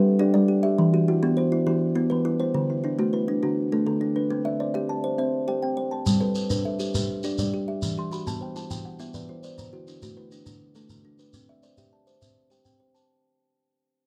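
This short cut from a longer piece is a southern African traditional mbira-style interlocking cycle in 12/8 at 136 BPM, with a straight, warm and hypnotic feel. Two kalimbas weave arpeggios throughout. The first is thumb-plucked, woody, dark and ringing, sitting up front from D3 to A5. The second is fingertip-plucked, mellow, soft and short, placed a little behind and reaching up to C6. A grainy shekere joins at 6.1 seconds with an acoustic, distant, large-room character. A kalimba fill arrives at 8.0 seconds over a looping G, Em, D, C progression, and the whole passage fades across its length until 13.1 seconds. Light reverb and small-room ambience give it the rough, intimate sound of a home demo.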